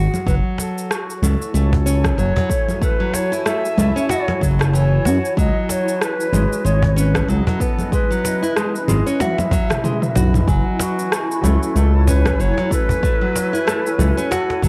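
Fingerpicked nylon-string guitar arpeggios and an up-front, gliding sawtooth synth bass with sidechain pumping open this earthy organic downtempo excerpt, soon joined by a deep electronic kick, a snappy hard-handed cajon, an overdriven electronic kit of cabasa, congas, rim click and toms, a distant, airy cedar flute melody with analog delay, and a cloudy granular pad in the background; after a drum fill, a faint metallic singing bowl rings in at 10.5 seconds and a soft, felt-muted upright piano slips in at 11.4 seconds, all within a gritty, lightly reverberant recording.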